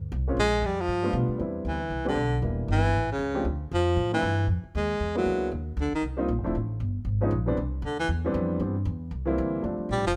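Playful and warm, this brief cut from a longer piece is small-group swing and bop in C major, moving at a brisk 233 BPM in 4/4 with a swung eighth-note feel. The upright bass carries the low end with woody, plucked steel strings, while a warm upright piano fills in the accompaniment with a natural, wooden tone. Up front, a clear baritone saxophone carries the melody with a soft attack and vibrato, stepping into a solo at 1.4 seconds that runs to the close. The harmony moves briskly through colourful jazz changes, from Cmaj7 through Em7b5, Fm7, E7#11 and Db9 before settling toward C9 and F69. Light reverb gives the close, up-front trio a touch of room around it.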